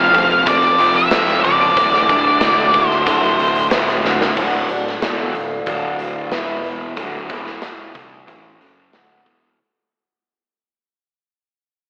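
Swaggering and driving, this 92 BPM classic rock excerpt has a double-tracked sludgy guitar riff and a punchy big drum kit in a bright stone room, with a growling overdriven bass and a shimmering twelve-string acoustic in the background, while a dark octave-fuzz lead guitar and a mellow, very quiet organ-string ensemble open the passage before a clean lap steel with slide and volume swells enters at 4.4 s as the track fades out in a lush hall with a big arena, AM radio character.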